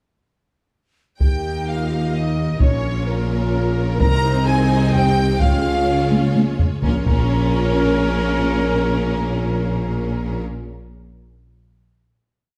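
Epic orchestral film score in 3/4 at 128 BPM in Bb dorian, dramatic and epic, where lush bowed violins carry the melody with a second violin line and a hollow, very quiet flute doubling at the octave, viola, French horns, strings and trombones sustain chords over a bass of tuba, double basses and cellos, dark distant trumpets add stabs, and heavy single taiko strokes drive the theme with a fill from 6.1 to 6.8 seconds before stopping at 7.7 seconds, all settling into a final chord from 6.8 to 9.6 seconds inside a wet recital hall reverb.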